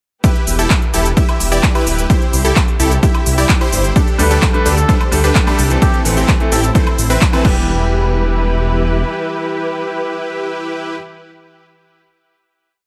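Emotional and powerful, this short festival progressive house piece in E minor at 129 BPM erupts straight into a drop where a punchy, overdriven four-on-the-floor kick and crisp programmed hats, claps, shaker, woodblock and crash drive a bright, detuned supersaw stab riff in dotted-rhythm chords, while a thick, menacing saw bass pumps off-beat beneath dark con sordino chamber strings, a muted cup-mute trumpet slips in short answering phrases from 4.2 to 6.7 seconds alongside a brilliant grand piano, and the drums drop away at 7.5 seconds, leaving the bass to pump on until 9 seconds as strings, stab and piano ring through a final hit in digital ambience.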